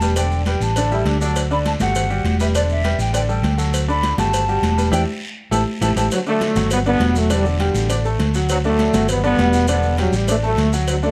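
Straight 4/4 salsa rhythm from thin-skinned, high-tuned congas, a low-tuned, saturated cowbell, raspy guiro and grainy maracas drives this sunny, joyful latin excerpt, where a dark, round hollow-body electric bass sits up front under a bright, worn concert grand piano, a distant, pure silver flute carries the melody until 6.1 s, a punchy trombone section adds a brief line at 0.9 s, and after a band accent a mellow trombone section takes over the tune from 6.1 s, all captured close and dry.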